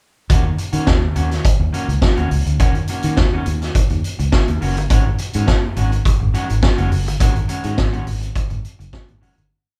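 Glamorous and danceable, this short disco piece sets a vintage drum kit up front, its tight kick driving a four-on-the-floor beat under sixteenth-note hats with a gritty, saturated, rolled-off tone. A dark, round fingered electric bass plays a syncopated line with chromatic approach notes, while a slightly broken-up electric guitar sits lower in the mix, picking a choppy sixteenth-note part as the harmony moves from Ebm7 to Ab7sus4. The band sounds like it is playing live in one room with light reverb, and the whole piece fades out from 7.2 seconds to its end at 9.5 seconds.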